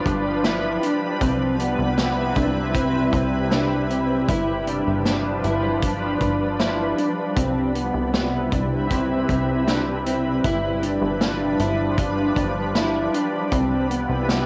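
A dreamy, floating dream pop excerpt in C major moves at an unhurried 78 BPM in a straight 4/4, its harmony swaying between G7 and Cmaj7 throughout its 14.5 seconds. A shimmering ambient pad sits up front with sustained chords, its detuned unison voices, octave-up shimmer and granular texture softened by chorus, built-in reverb and a cassette haze. Beside it, a dark, slightly broken-up electric guitar plays fingered arpeggios through analog chorus and analog delay, also colored by tape. A plucky analog bass with a punchy, funky sawtooth and pulse-wave tone enters at 0.1 seconds along with a vintage acoustic drum kit, whose gritty, saturated hi-hat, tight kick and medium-tuned snare sit up front with a rolled-off top. The whole excerpt has the intimate feel of a home cassette recording in a moderate studio reverb.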